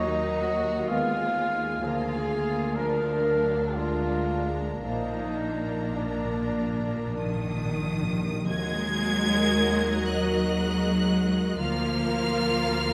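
Classical orchestral music in Eb minor, solemn and elegiac, moves at a slow, rubato 3/4 pace (45-65 BPM) as lush, vibrato-rich violins carry a focused melody over a distant second violin line, smooth violas, clear cellos and even double basses, with a ringing harp arpeggiating in the background, a dark, up-front trumpet section punching stabs until 7.8 s, mellow French horns holding chords from 0.9 s, and hard-mallet timpani adding a fill from 4.8 s, all set in the wet reverb of a scoring stage in this excerpt from a longer piece.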